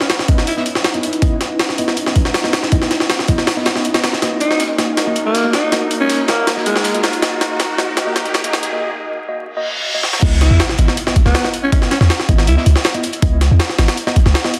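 A dark, nostalgic drum and bass piece at 160 BPM in C# dorian opens with gritty, overdriven jungle drums up front, a warbling lo-fi tape pad on C#m9 and brief phrases from a raspy alto saxophone with dub echo, joined by a very quiet crunchy breakbeat kit and mellow tine electric piano stabs under a filter sweep. Background risers and a reverse cymbal build toward the drop at 10.2 s, where an impact hits, a deep sine 808 bass enters up front, and the saxophone comes back soon after. The dense, heavily limited master carries vinyl crackle and a lush hall reverb.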